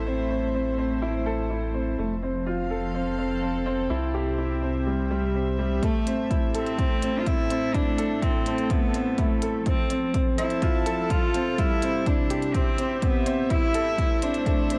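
A dark production set in a moderate concert hall reverb frames this melancholic, moving slice of piano and strings electronica. A distant, sul tasto string section holds soft-attack chords that pump against the sidechain, while a clear, woody upright piano plays an up-front riff through digital delay, and a round, deep analog bass with tube saturation and sidechain pumping anchors the opening until 5.8 seconds. From there a build-up begins as a rich, floating solo cello takes the melody with its own digital delay, joined by a punchy, overdriven electronic kick and clicky, tape-warm hi-hats, both in small room ambience.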